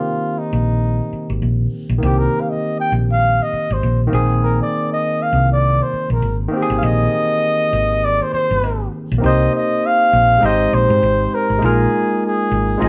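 Lush 1970s-style soul with a silky, cinematic mood, cut from a longer piece, where a breathy, intimate flugelhorn with light vibrato carries a solo melody until 9.2 s over a barky, lightly overdriven tine electric piano and a round, punchy hollow-body electric bass that enters at 0.5 s, the band playing live together in a large studio room with moderate reverb.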